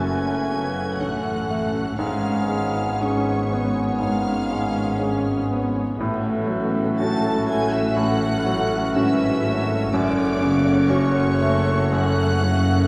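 Passionate and tragic, this romantic movement for piano and orchestra in F# minor moves at a slow, rubato 60 BPM, with a clear, polished baby grand piano up front carrying the melody while a rich, smooth violin section sings it high above, and a hollow, mellow flute, a second violin section with expressive portamento, and a very quiet clarinet weave second lines in the background. A bassoon and close viola section supply accompaniment, a French horn section holds soft sustained chords, and a distant trumpet adds stabs, while a woody, dark double bass section, a very quiet cello section and a roomy tuba anchor the bass. The whole passage sits in a wet concert hall reverb, heard from further back in the room, with vinyl crackle over the harmony as it moves from F#m through C#7/G# and F#m/A before settling on F#m at 9.9 seconds.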